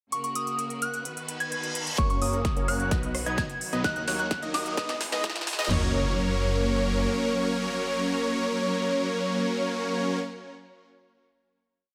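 Festival progressive house, uplifting and euphoric, that opens with a gentle FM bell melody over distant bowed strings and crisp programmed hats and rim clicks, then at 2.0 s brings in huge pumping supersaw chords, a thick detuned saw bass, a mellow unison lead doubling the chords in arpeggios and a punchy overdriven kit of kick, snare, toms and crash for a filter-swept build, before resolving on a sustained final chord at 5.7 s, with faint reverse cymbal, riser and impact effects marking the transitions inside a lush hall reverb.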